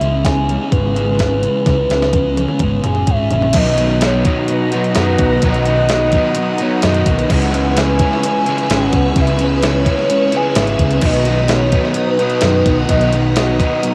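Blissful and hazy, this shoegaze and dream pop rock excerpt in B major moves at 128 BPM in a straight 4/4, as a hollow, woody clarinet-like synth lead carries the melody through chorus, phaser, cassette tape and tape echo over a dark overdriven semi-hollow guitar riff with reverse reverb, a thick fuzz guitar riff with distortion and subtle chorus, very quiet twangy arpeggios from an electric guitar through a small old amp, a round, punchy picked electric bass and a thumpy, up-front 12-bit drum machine on cassette tape with a fill from 1.7 s, before a swirling, warbling phased string machine enters with sustained chords at 3.6 s as the harmony alternates between C#m7 and Bmaj7 in a lightly reverberant home cassette recording.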